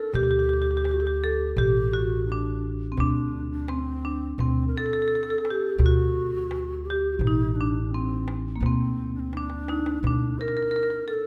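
Melancholic and full of longing, this brief cut from a longer Arabic maqam ensemble piece in straight 4/4 sets an up-front marimba melody, struck with medium hard mallets for a dark, smooth and percussive tone, over a breathy, hollow low ney second line with soft attacks and vibrato, a woody pizzicato upright bass on steel strings, and a crisp metal-shell darbuka played close with hard hands that delivers a drum fill from 9.3 to 10.0 seconds, all in light reverb.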